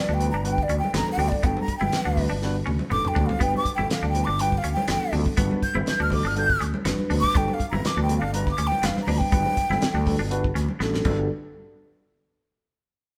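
A breathy, mellow concert flute leads this funky, slick slice of electric jazz fusion, soloing up front with vibrato, a crisp attack and a slightly unsteady tone from the start until it stops at 10.1 seconds. Beneath it, at 122 BPM in a straight 4/4 and resting on a Gmaj9 chord in G lydian, a clean tine electric piano plays accompaniment through its built-in speakers with a phaser. A bright, compressed, twangy electric guitar adds picked stabs, while a growly fretless bass plays the bass line from 0.1 seconds. A damped 70s drum kit sits up front with a fat snare, tight kick, dark cymbals and a warm, rolled-off top, breaking into fills at 2.4 and 10.8 seconds, and very quiet congas ring with hard hands in the background. The band plays live in one stone room with a wet reverb, and the chord drops away at 11.3 seconds as this cut from a longer piece moves into its next section.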